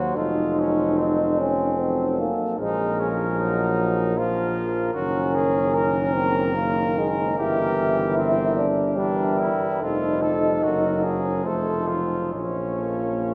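A long, wet cathedral reverb surrounds this short passage for brass band, cut from a longer piece, and gives it a spacious, hallowed air. It is a classical, hymn-like chorale in three, moving with a free, rubato pulse and an elegiac, melancholic mood. A clear cornet carries the melody, while a mellow, punchy flugelhorn sings a second line from further back in the space. Up front, the euphonium adds accompaniment with a light vibrato, joined by a very quiet, roomy trombone, and the tuba anchors the bass with a soft attack. All five parts sound together from start to finish, with harmony that opens on an F7b9 chord and settles on Bbm at 12.3 seconds.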